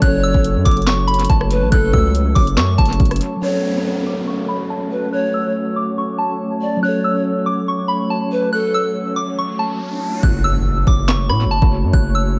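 Hip hop trap at a half-time feel, hard-hitting yet melancholic, built on a soft, pure FM synth bell melody with chorus, phaser and tape echo, a breathy pan flute second line that drops out at 8.9 seconds, a mellow tine electric piano and a glassy, ethereal FM pad holding sustained chords on an F# minor chord. A distorted, aggressive 808-style bass and a tape-warm trap kit with knocking kick, sharp snare, bright hats, handclaps and rim clicks sit up front, falling away by 3.4 seconds while a filter sweep and electronic downlifter and riser carry the middle. The bass and drums return at 10.2 seconds with an impact and the hi-hats muted, all in an echo-heavy mix with light reverb, cut from a longer piece.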